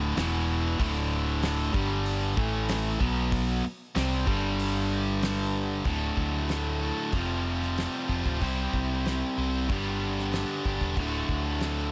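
From the opening moment, two picked, up-front electric guitars, one dark and overdriven and the other bright and distorted, drive a confident classic rock riff in straight 4/4 over a round, hollow-body fingered bass and a dry, damped 70s kit with a fat snare, tight kick and hi-hat, moving from power chords into a D, Fsus2, C, G progression at 5.9 seconds in this short cut from a longer piece, all set in a small room.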